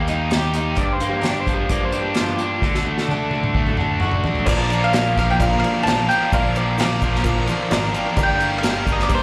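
Heard through a club's PA with a light reverb, this dusty, reflective folk-rock and heartland-rock excerpt opens on an up-front, double-tracked overdriven electric guitar riff, a shimmering, octave-doubled jumbo twelve-string acoustic guitar with slapback echo in the background, a direct fingered electric bass, and an airy, polished unplugged drum kit played with bundle sticks, its high-tuned snare and punchy kick sitting up front. A dark, slightly broken-up slide guitar played with fingerpicks adds a brief second line from 0.8 seconds, and a drum fill at 2.6 seconds leads into the next section. At 4.5 seconds a double-strung bowl-back mandolin takes the melody through slapback and tape echo, joined by a very quiet, woody, slightly detuned upright piano that adds a short fill, a reedy, breathing pedal harmonium holding mellow chords, and a grainy, bright tube shaker tucked behind.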